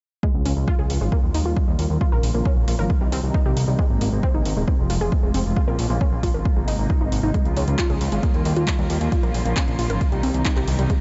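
Uplifting trance at 135 BPM in Bb dorian, driving and euphoric, built on an overdriven, punchy electronic kick and a fat, nasal, detuned analog bass under warm, bowed string chords and a warbling, wave-folded unison pluck arpeggio with gritty 12-bit character and tape echo, both of which carry filter sweeps, while a dry drum machine adds handclaps and hi-hat, and sidechain pumping moves the pluck, strings, bass and hats through a Db, Ebadd9, Bbm, Cm progression in a light, digitally reverberant mix cut from a longer piece.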